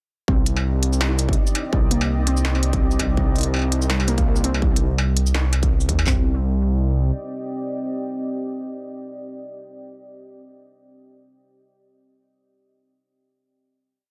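Heavy and tense, this short half-time drum and bass piece in 4/4 opens straight into a drop at 0.3 seconds on a single minor chord, with a swung sixteenth feel. An up-front, distorted electronic kit hammers out a half-time pattern of kick, floor toms and handclaps, while a second industrial kit adds a sparse beat of crisp hi-hats, shaker, a clanging snare and struck metal, both sounding re-recorded in a small room. Beneath them, a detuned sawtooth bass rumbles through chopped, tube-saturated phrases, sitting just as prominently as the kick. A warbly, dusty lo-fi pluck with chorus and digital delay loops a 12-step arpeggio that drifts against the bar in the background, and a very quiet, grainy texture flickers on one held high note. From 0.9 seconds a deep, moody pad with chorus, reverb and sidechain pumping sustains dark chords beneath everything, and when the drop gives way at 6.1 seconds it carries the final chord, ringing out to 9.2 seconds inside a dense, heavily limited master with digital ambience.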